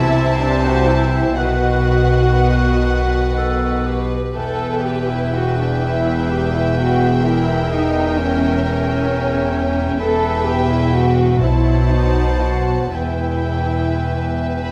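A dark, up-front double bass section anchors this elegiac orchestral passage, its soft-attack sul tasto tone floating beneath a rich cello section that shares the bass line. Above them, a studio violin section carries the melancholic melody with light vibrato and an intimate, close sound, while a second violin line, a close-miked solo oboe, a very quiet flute ensemble with rolled-off highs, and a distant, roomy clarinet weave supporting lines. A woody, lush viola section and a mellow bassoon in the background provide accompaniment, and a tight French horn section holds warm sustained chords. The slow, rubato movement in 6/8 drifts through minor harmony, touching a diminished chord at 7.2 seconds before settling back. Moderate scoring-stage reverb surrounds the ensemble for the full 14.7 seconds, which are cut from a longer piece.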